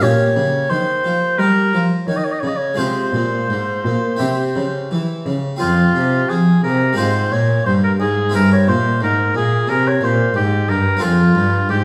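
Over an unevenly felt four-beat pulse, this solemn, flowing baroque-style sonata fragment sets a lightly vibrato oboe melody up front against a brilliant, full-bodied harpsichord accompaniment and an expressive bowed cello bass with vibrato and portamento, all heard from further back in a wet, stone-walled room.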